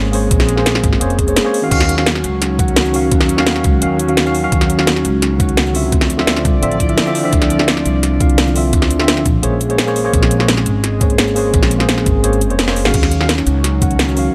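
Dreamy and soulful, this liquid drum and bass excerpt moves at a brisk, straight-ahead pace, cut from a longer piece. A worn, slightly out-of-tune tine electric piano carries the accompaniment through tape echo, while an airy, breathy pad holds sustained chords with chorus in the background and a mellow vibraphone with soft mallets ripples through arpeggios under digital delay. Underneath, a woody, growly upright bass plays pizzicato, and an up-front electronic drum kit with a cracking snare, metallic hats, shaker and crash pairs with a gritty, thumpy kick that is compressed and pitched up. The chords drift from Bbm9 to Ebm9, Dm9 and back, with a drum fill at 12.7 seconds. Light reverb and digital ambience give the mix a soft sheen.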